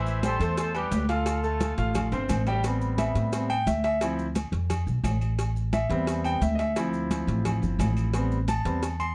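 Salsa with a passionate, fiery drive, cut from a longer piece: a vintage horn section carries the melody until 2.3 seconds over a brilliant, up-front concert grand piano and a woody, thumpy pizzicato upright bass. After a drum fill, the piano takes a solo from 2.6 seconds to the end over alternating Am7 and Dm7 chords, while background congas with a thin skin, a round, low-tuned cowbell, grainy maracas, and ringing metal-shelled agogo bells and timbales fill out the percussion. The production is dark with light reverb, with the congas and cowbell close and dry against the live-room sound of the bells, timbales and maracas.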